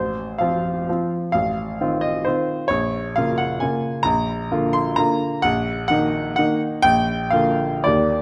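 Rustic and graceful, this excerpt of a romantic classical dance in 3/4 moves at 131 BPM with dotted rhythms, uneven beats and rubato, and is tuned to A4 = 435 Hz. A solo baby grand piano carries it alone, spanning A1 to C6 with a natural, short-sustained tone that sits up front. It begins in Bb minor and brightens to Bb major at 4.1 s, captured by close, detailed microphones within a moderate stage reverb.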